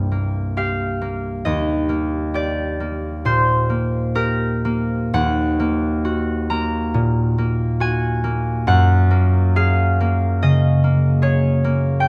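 Classical solo harp in a mysterious, wistful mood, moving in a rubato 4/4 at roughly 58-74 BPM and tuned slightly low at A4 = 437 Hz. The concert harp is fingerpicked and up front, its ringing tone spanning C2 to Bb5 through chords that drift from Cm7 and Ebmaj7 to Ebm and finally F#maj9. Close, detailed microphones catch the instrument within a moderate recital hall reverb, in a 12.1-second passage cut from a longer piece.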